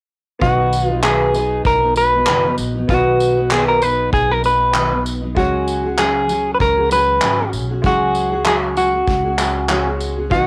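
From 0.4 s, a carefree, sunny acoustic pop excerpt at 97 BPM with a light sixteenth-note swing sets an up-front, clean, dark-toned electric guitar melody over a double-tracked, full-bodied fingerpicked jumbo acoustic guitar and a bright, brilliant upright piano sitting in the background, all three with a cassette-tape colour, while a woody pizzicato upright bass and a smooth vintage brush kit with a tight kick, handclaps and tambourine carry the groove in a moderate studio reverb, the harmony moving from B to F#sus2 at 5.4 s.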